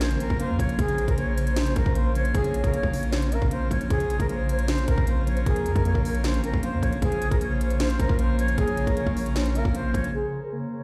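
From the first moment of this brooding, menacing half-time trap excerpt, up-front trap drums with a hard-clipped kick, sharp snare and crisp hats hit alongside a punchy, heavy 808-style bass, while a distant, airy jazz flute carries the melody with vibrato over a clean tine electric piano, a majestic full pipe organ holds sustained chords, and a smooth, detuned portamento lead glides in the background, the mix ringing inside a stone-room reverb.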